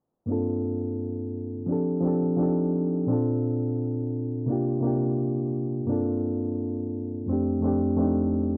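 Swung sixteenths in an unhurried 4/4 give this short hip hop passage, cut from a longer piece, a loose, lazy lilt. A reed electric piano carries the whole passage from 0.3 to 8.6 seconds, playing up-front accompaniment in its low and middle register. Its tone is reedy and lightly overdriven, heard through its built-in speakers and colored by a cassette-tape grit. The chords drift through lush extended voicings, from Gm11 across F69 and F13 to Bbmaj7 and C9sus4 before circling home. A filter sweep runs across the entire passage, and the production is dark and low-passed, with a damp small-room reverb. The mood is hazy and reflective, like a half-remembered loop playing late at night.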